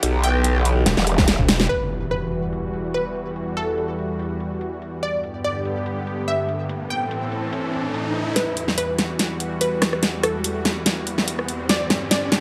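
Opening on a drop, this menacing, aggressive excerpt of heavy wobble dubstep at 144 BPM in half-time and E minor hits at once with several parts: an up-front growling growl bass, a lush detuned supersaw pad pumping under sidechain with 12-bit grit and a low-pass filter sweep, a punchy wave-folded unison pluck melody trailed by tape echo, and a tape-warm dubstep kit with a huge snare and metallic hats in studio reverb. A saturated pulsing pluck wobble bass and a knocking electronic kick join briefly before the growl stops at 1.4 s. Electronic impacts and risers arrive from 1.7 s over Emadd9, G and Am chords, leading into a build-up from 8.4 s.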